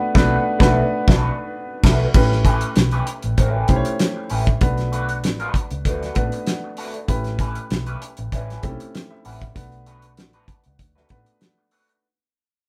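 Bittersweet and silky, this short excerpt of lush 1970s-style soul moves at 97 BPM in B minor with a light sixteenth-note swing, opening on a band accent before a fade-out from 2.1 seconds as the harmony rocks between Bm7 and A9. An intimate grand piano with audible action noise sits up front in accompaniment beside a damped, dry drum kit with a fat snare, tight kick, hi-hat and crash cymbal. A dark, round, foam-muted fingered bass anchors the low end, while a bright, twangy electric guitar through a small old amp picks a slightly broken-up wah riff, all heard as a band playing live in one room with a short, wet studio reverb.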